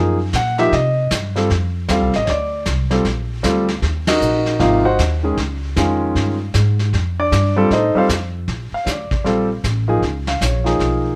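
An up-front grand piano carries the melody in this swinging, sophisticated jazz trio passage, a short cut from a longer piece, ranging from its middle register up into the upper octaves with a warm tone. Beneath it, a pizzicato upright bass with steel strings gives a woody, thumpy low line that sits just behind the piano. A vintage brush drum kit joins at 0.3 seconds: brushed snare, hi-hat, kick, ride and snare, with dark cymbals, a medium-tuned snare, a punchy kick and a rolled-off top, heard as if in a small room and placed lower in the mix. The whole trio lands a shared accent at 4.0 seconds. The harmony moves through a mix of seventh chords and plainer triads and shifts to a new section at 8.5 seconds, ending on a Db9. A moderate studio reverb gives the group a polished, intimate sense of space.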